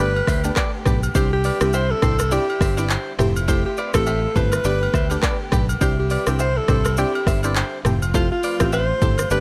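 Afrobeats at 103 BPM with a sunny, joyful swing, where an alto saxophone with pop vibrato carries the melody over a woody, detuned synth pluck treated with chorus and phaser, a clean picked electric guitar riff, lush bowed strings in the background, a round fingered bass up front, agogo bells and woodblock from 0.2 seconds, and an overdriven electronic drum kit with deep kick, dark hats, handclaps, rim click, shaker and toms from 0.3 seconds, all moving between Gadd9 and Fmaj7 in a dry, gritty recording cut from a longer piece.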